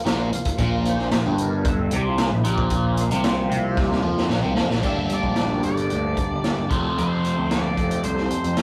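A straight 4/4 groove at 113 BPM drives this short, hypnotic and dark psychedelic rock excerpt, built on a raw garage drum kit with a punchy kick, a medium-tuned snare and hi-hat, its sound gritty and roomy with a rolled-off top, plus a drum fill from 3.8 to 4.8 seconds. A fuzz picked electric bass sits beneath it, round and overdriven, while barely audible congas ring in close and dry. Up front, an overdriven semi-hollow guitar plays a bright, double-tracked riff through a phaser, and in the background a percussive tonewheel organ holds fat, clean sustained chords with key click, chorus vibrato and a slow rotary speaker. The harmony moves from Bb5 to Gm at 4.8 seconds and then to F, and at 4.9 seconds an octave-fuzz lead guitar enters with a dark, distorted melody between C5 and E5. The whole has the rough, saturated character of a rehearsal-room recording with moderate reverb.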